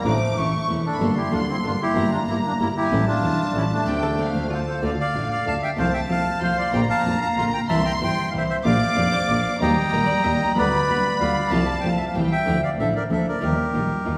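A rubato tango in 3/4 opens this brief, melancholic and tense passage cut from a longer piece, its chords moving through a minor-key opening before settling toward F major from 4.8 seconds. The reedy bandoneon carries the melody up front, while a symphonic violin section adds a smooth, even second line with vibrato in a high register until 12.5 seconds. Underneath, a single bowed double bass gives a clear, biting, earthy foundation with light vibrato, and a fingerpicked nylon-string guitar supplies full-bodied accompaniment, its finger squeak audible. A clean, hollow-body electric archtop guitar slips in briefly in the background as another second line, first during the band accent that ends at 4.8 seconds and again around 9.0 seconds. Heavy concert-hall reverb with a two-second tail surrounds the ensemble, lending the small group a spacious, churchlike glow.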